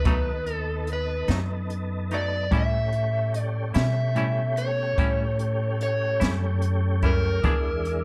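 An overdriven slide guitar, dark and up front, carries the melody in this laid-back, soulful slow blues in 12/8. Beneath it, a tonewheel organ holds smooth sustained chords through a slow rotary speaker with chorus vibrato, while a clean electric guitar adds bright, twangy picked accompaniment colored by tremolo. A woody, thumpy pizzicato upright bass sits prominently in the mix, and a jazz kit played with brushes supplies hi-hat, a boomy kick and a high-tuned snare. The harmony moves from B7 to A7 at 2.5 seconds and reaches E7 at 7.4 seconds. Small-room ambience frames the warm production of this passage, which is cut from a longer piece.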